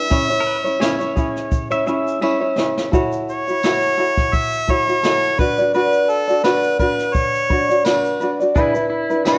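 Heard through worn, warbling cassette tape with a drifting pitch, this short cut from a longer acoustic pop piece sits in a moderate recital-hall reverb. The mood is tender and wistful, with a swung feel in 4/4. A warm, smooth-topped harmonica carries the melody up front, and a light, fingerpicked tenor ukulele sits close beside it in accompaniment. A distant, roomy brush kit with a punchy kick, medium-tuned snare and shaker keeps time, and a jingly tambourine stays far in the background. A bright, twangy pedal steel guitar adds a clean, compressed second line with slide and volume swells, stopping at 2.9 seconds as a drum fill ends and returning at 8.6 seconds as the harmony reaches E7.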